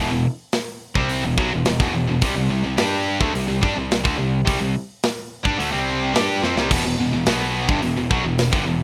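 Heavy metal in E minor at 107 BPM in a straight 4/4, aggressive and heavy, this short passage is cut from a longer piece. Three high-gain guitars play the riff from the start, one bright and up front, a double-tracked one sitting in the background, and a scooped one that is very quiet, all spanning E2 to G4. A fuzz-laden picked electric bass, overdriven and punchy, runs beneath them from E1 to G2. The tight acoustic drum kit comes in at 0.5 seconds, mid-forward with a medium-tuned snare, a tight kick, a rolled-off top, crash cymbal and hi-hat, and it drops a fill at 6.4 seconds. The harmony moves from Em to C5 and back to Em, and the dry, rough home-demo mix keeps the whole band sounding raw.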